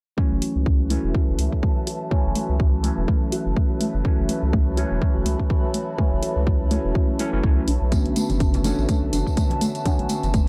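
A punchy, up-front electronic kick drives this moody, smooth deep house excerpt at 124 BPM with a 16th-note swing, joined by a deep, round analog bass carrying a filter sweep and an overdriven electric piano whose barky, gritty stabs pass through phaser, low-pass filter and tape echo. Behind them sit a warbling, nostalgic tape-like pad, a breathy pad and a soft pluck arpeggio with digital delay, all pumping against the kick along with the bass and piano, while an overdriven hi-hat ticks above. The harmony moves from F#m7 to Bm9 at 7.7 seconds, and close, dry congas and a jingly tambourine enter at 7.9 seconds in a dark production with little reverb.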